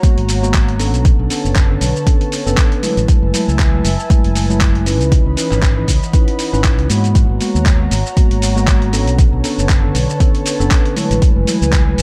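Moody and hypnotic, this swung deep house cut pairs an up-front, deep electronic kick with a gritty, overdriven sampler-style kit of handclaps, hi-hat and shaker, while a round, dark fingered electric bass enters at 0.2 seconds beneath mellow tine electric piano stabs trailing dub echo, all over minor ninth chords carried by a smooth, detuned analog pad and a warbling, nostalgic tape-like pad that sit in the background with chorus and sidechain pumping in an echo-heavy mix.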